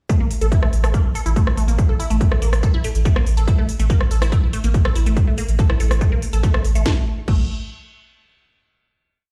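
Driving peak-time techno at 142 BPM with a relentless, hypnotic pull, built on a heavy, up-front four-on-the-floor electronic kick. Programmed hats and crash pump against it alongside a cracking snare backbeat with rim clicks, while a thick, saturated sub bass rumbles on A1 between the kicks. On top, a juicy, squelchy resonant blip pluck repeats a 7-step loop that drifts against the bar, colored by phaser, tube saturation, cassette tape and delay, until the groove gives way to a final note at 6.9 seconds, all heard through the stone-room reverb of a big sound system in a bare room.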